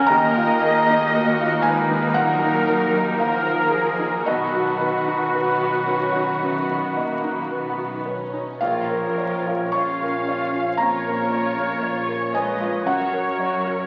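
Slow rubato at 56 BPM in 4/4 with uneven beats, this sorrowful, moving cinematic film-score excerpt in Eb minor sets a veiled con sordino violin section's melody over a soft, felt-muted upright piano up front with audible action noise, while a second muted violin section, a pure-toned small flute group, a distant oboe with light vibrato and a mellow clarinet weave second lines, rich muted violas add accompaniment, a dark, very quiet French horn section holds sustained chords, and lush muted cellos and double basses carry the bass, all bathed in a wet scoring-stage reverb and the crackle of a very old 78 rpm record.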